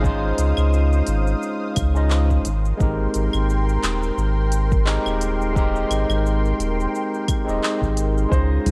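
Sunny and blissful, this short sunset chillout excerpt rides a swung 4/4 groove, with a gritty, barky overdriven tine electric piano up front, its chords smeared by tape echo, over a round, deep sub bass and a lush, detuned unison pad treated with chorus and phaser, moving from Dbmaj9 to Abmaj9 at 2.5 seconds. A deep electronic kick and a smooth-hatted deep house kit with cabasa, claves and handclaps sit in a small room ambience, and the kick drops out at 8.5 seconds. A clear baby grand piano briefly touches C5 at 8.3 seconds, and hard-handed congas strike at 8.7 seconds, all within a dark production under light digital reverb.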